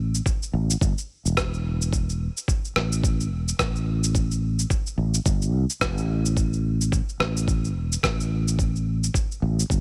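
A dry, close sound puts three parts up front in this short cut from a longer piece, an organic downtempo groove at 108 BPM in 4/4 with a swung sixteenth-note feel and a meditative, warm mood. A sustaining fretless electric bass opens at 0.0 seconds, growly and punchy with a direct, amped tone, holding low between E1 and C2. Electronic shaker and rim click join at 0.1 seconds, sampler-style, compressed and gritty, pushed into overdrive and set in a studio reverb. A thumpy electronic kick drum arrives at 0.3 seconds, also overdriven and compressed, with the same studio reverb. All three parts carry on together to the end at 9.8 seconds, keeping a single steady section.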